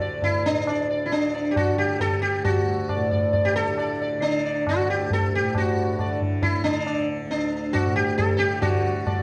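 A sitar, tanpura and tabla sound together from the first moment of this short Hindustani excerpt, setting a devotional, serene mood in raga Khamaj over a seven-beat cycle with a straight feel. The sitar carries the melody up front, its plectrum-plucked tone buzzing and shimmering with the ring of sympathetic strings as it moves between D4 and D5. Beneath it the tanpura holds a softly plucked drone from D2 to D3, bright and buzzing, sitting well back in the balance. The high-tuned tabla speaks with a short ring, sounding close and dry against the sitar and tanpura. The recording is wrapped in a recital-hall reverb, and the overall production leans dark, giving the whole 9.2 seconds a calm, contemplative glow.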